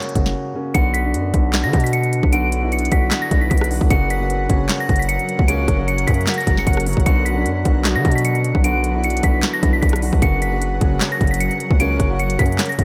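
Lightly reverberant, this dark, eerie half-time trap excerpt sets an up-front electronic drum kit with a hard-clipped kick, sharp snare and crisp hats over a saturated, heavy 808-style bass from 0.2 seconds and a deep-toned concert grand piano accompaniment, while a delicate, tinkling FM tine bell melody with chorus and diffuse ambient delay enters at 0.7 seconds and a blurred, evolving granular pad drifts in at 2.1 seconds in the background as the harmony moves between F# and Bm.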